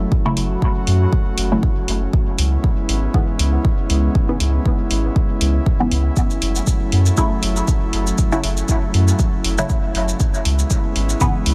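Nocturnal and meditative, this dub techno cut from a longer piece moves at 119 BPM in F# minor with a light 16th-note swing, circling between F#m7 and C#m7 over about 11.5 seconds. An up-front, tape-warm kick drum and a round, sine-like sub bass anchor the groove, while a layered electronic hi-hat and shaker enters at 0.4 s and the bass, pad and muted sawtooth chord stabs all pump against the kick. The filtered stabs carry a phaser and dub echo with a short, mellow pluck, and above them a breathy, airy pad with chorus and a slow attack hovers in a digital ambience.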